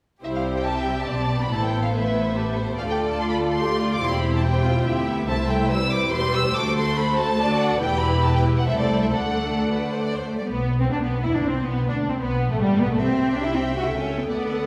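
Classical-period string orchestra movement in C major, quick at 142 BPM in 3/4 with a rubato feel and a lively, spirited mood, heard as a short cut from a longer piece running to 14.7 seconds. A focused violin section carries the melody over a second violin line shaped with portamento and close expressive vibrato, while smooth, even violas supply accompaniment and cellos pair with a soft-attacked double bass section on the bass. The strings sit in a reverberant recital hall, with harmony moving from C through Am, Dm7 and D7 before a second passage opens at 10.5 seconds on Cmaj9/B and Gadd9, closing on A7/C#.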